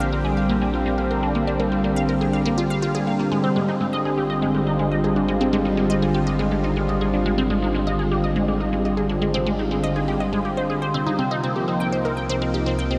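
A resonant blip pluck leads this excerpt of ambient, sequencer-driven space music, repeating a bright, squelchy riff with a snappy attack and short decay, colored by phaser and tape echo. Beneath it, a lush unison pad holds thick, detuned sustained chords that bloom slowly and linger, shimmering with chorus near the front of the mix. A round, deep analog bass sits low and dark under both, anchoring the harmony. All three parts play throughout, moving from Bb7 to Ab at 3.3 seconds and settling on Cm at 11.2 seconds. The whole mix is soaked in a huge, dreamy reverb with a cassette-tape haze, giving the piece an expansive, hypnotic feel.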